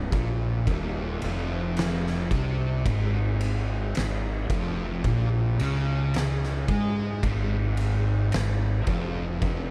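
An oversized, low-tuned acoustic drum kit sits up front with a punchy kick, fat snare and dark ride cymbal in a pumping stone room, alongside a growly, overdriven fingered electric bass, while two distorted, picked fuzz guitars churn a riff in the background, moving from Cm to Ab5 at 2.9 seconds in this ominous, brooding stoner and doom metal piece at a slow 55 BPM with light reverb and a dark production.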